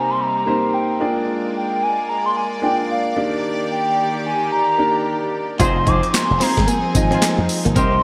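Swung sixteenths carry this bouncy, confident R&B and new jack swing passage, where a hollow, woody clarinet-like synth lead sings the melody with chorus, vibrato and slapback echo over a deep-bassed grand piano with its own slapback echo and bowed, gut-toned studio strings holding sustained chords, until at 5.6 s a clean, picked electric guitar riff in the background, mellow jazz-style horn stabs, a punchy slap bass with an envelope filter and a gritty, overdriven, up-front breakbeat kit of thumpy kick, snare, hi-hat, handclaps and tambourine all enter, the whole mix bathed in a lush hall reverb for a big arena sound.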